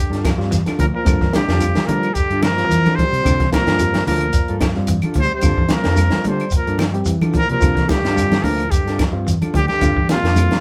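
A live-room recording with moderate studio reverb carries this driving, hypnotic afrobeat excerpt over a single Gm9 chord. A breathy, whispered trumpet leads up front above a veiled bucket-muted trombone and a very quiet, punchy trombone section. A compact cocktail kit with a high-tuned snare and punchy kick sits forward with a round, amped fingered bass. In the background, a clean guitar plays tremolo stabs, a hollow-body semi-hollow guitar plays arpeggios, and a reedy electric piano with harmonic tremolo adds accompaniment. Damped congas, a grainy shekere and woody claves fill out the percussion.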